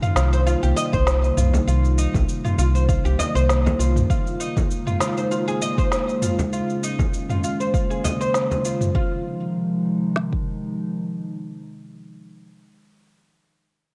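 Organic downtempo in F minor at 99 BPM with a lightly swung 16th feel, this hypnotic, meditative excerpt from a longer piece rests on a warbling, lo-fi pad of sustained chords with chorus, reverb, sampler grit and sidechain pumping, while a plectrum-plucked fretless oud spins filtered, delayed arpeggios until 9.2 seconds. A round FM bass sits up front from 0.2 to 4.0 seconds, and two electronic kits carry the groove: one with shaker, toms and a snare, the other with a kick and a snare re-recorded in a large room. A soft-handed frame drum adds low acoustic pulse beneath a dark production with a moderate echo-chamber reverb, as the chords move from Cm7 through Eb7sus4 to Fm7 at 8.9 seconds.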